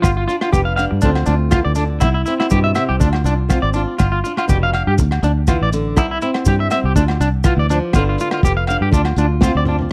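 A sunny, danceable highlife guitar band groove opens at once with the full group, a short cut from a longer piece with a light swing on the sixteenths. A twangy electric guitar at the edge of break-up sits up front playing picked arpeggios, its tone slightly broken-up and colored by tremolo and tape echo, while a bright, fingerpicked flamenco guitar adds accompaniment with audible finger squeak. Underneath, a round, foam-muted fingered electric bass rides up front with a dark, direct-and-amped sound, and a crunchy breakbeat kit brings a punchy kick, medium-tuned snare, rim clicks, hi-hat and toms, saturated and gritty with a rolled-off top. Ringing agogo bells sit in the background and grainy, mellow maracas add texture as the harmony circles through G7, Dm7 and C. A drum fill from 9.4 to 9.9 seconds closes the passage, all captured in a dry, close 1970s-style studio sound.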